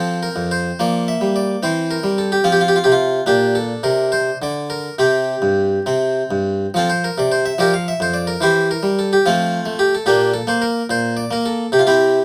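A bright, plucked Flemish-style harpsichord on one set of strings plays solo and up front through this short, flowing, radiant baroque-style suite movement in a rubato 6/8, its phrase stated twice across a range spanning F2 to F5 and captured by close, detailed microphones with light reverb in a passage cut from a longer piece.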